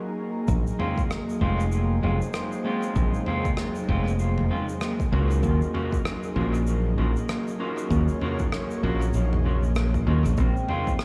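Ambient dub at 97 BPM with a swung sixteenth feel and a hazy, spacious mood, this excerpt opens on a breathy, detuned pad holding chorused chords alone before bass and drums enter at 0.5 seconds, moving from Bbm7 to Ebm7 and back. A bright, punchy fingered electric bass sits up front beneath a deep, tape-toned electronic kick, while a dark, smooth rock kit adds rim clicks, shaker and toms through dub echo, and from 0.8 seconds a clean electric guitar places fingered stabs into the same echo. At 10.4 seconds a mellow, ringing handpan slips in with soft background arpeggios, all set in an echo-heavy mix with a small-room ambience.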